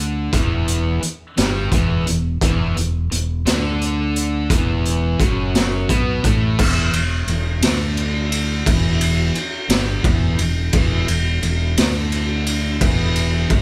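Quiet-loud alternative rock in E minor at a brooding, angsty 58 BPM in 6/8, where a crunchy overdriven guitar and a compressed, distorted fuzz guitar share the riff until the overdriven part stops at 6.6 s, over a punchy, growly fingered bass and a gritty, saturated garage drum kit that enters at 0.3 s with a boomy kick, played by a band live in one room with light reverb.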